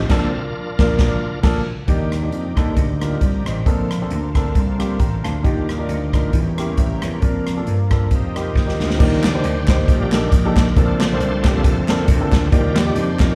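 An excerpt of soulful, hopeful uptempo gospel at 135 BPM with a light swing opens on a bright, shouting tonewheel organ taking the lead through a slow rotary speaker and light overdrive, backed by a growly, up-front slap bass, a dark, mellow grand piano with slapback echo, and a punchy, airy big-band drum kit with dark cymbals, as the band hits accents beneath it. From 1.9 seconds a hollow, flute-like pad sits softly in the background while the harmony moves through rich major-seventh and ninth chords, a diminished passing chord and a suspended dominant, with a brief piano fill and a drum fill leading back to the organ solo at 9.0 seconds. Crisp group handclaps join from 9.2 seconds, and the whole performance carries the sound of a live gig heard through the venue's PA with club reverb.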